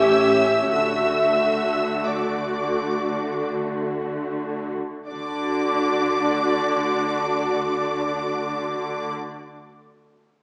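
A full string orchestra opens on an A7 chord that settles onto D major at 0.7 seconds, beginning this tender, serene slow romantic movement, cut from a longer piece, in free time. High violins carry the melody with a rich, smooth vibrato, while a second violin section sings a lush, warm line an octave below. The violas sit up front with an even, full-bodied accompaniment, and the cellos and double basses anchor the bass, the cellos expressive with portamento and the basses dark and soft in attack. The pace slows over the opening passage before a new section begins at 5.1 seconds, and the strings play together until 9.1 seconds. A scoring-stage reverb places the ensemble further back in the room, with a small-speaker quality to the overall sound.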